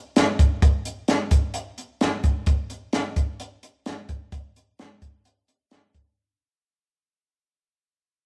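Bittersweet and moody, this short rock excerpt moves at 130 BPM in a straight 4/4 feel. A compact cocktail drum kit is the only part, entering at 0.2 s and playing through 6.0 s with hi-hat, kick drum and snare drum. The kit sounds acoustic and up front, warm, dark and smooth with a rolled-off top, a punchy kick and a high-tuned snare. It has a small-room sound with light reverb, and the rough rehearsal-room recording carries warm saturation. A fade-out runs across the whole clip, which is cut from a longer piece.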